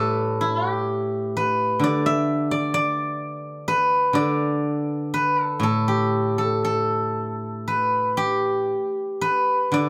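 Chinese traditional solo plucked-string music, flowing and serene, moves in a free rubato around 56-65 BPM in 2/4, set in the G gong mode. A single steel-string zither, played with fingerpicks, carries the whole passage from 0.0 to 9.9 seconds, its silvery, ringing tone sitting up front across a range from A2 to B5. A moderate small-room reverb gives the mellow acoustic instrument a gentle halo in this brief section cut from a longer piece.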